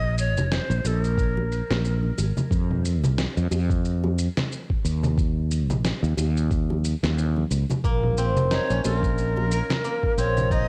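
A breathy, reedy ney opens this mystical, earthy organic downtempo cut alongside a growly fretless electric bass that sits up front with sidechain pumping, the ney's phrase colored by cassette tape and tape echo. Moving at 90 BPM in 4/4 with a swung sixteenth-note feel in Bb minor, the groove fills in as a gritty, sampler-style kit of electronic shaker, fat snare and congas arrives, followed at 1.2 seconds by a thumpy, tape-warm electronic kick re-recorded in a large room. Ringing acoustic congas and bongos sit in the background of a small room throughout. At 7.8 seconds a silvery, fingerpicked steel-string zither enters up front with arpeggios through analog delay, and the ney returns at 8.5 seconds with vibrato and tongued notes. The whole piece has the intimate, lo-fi character of a home cassette recording, drawn from a longer work.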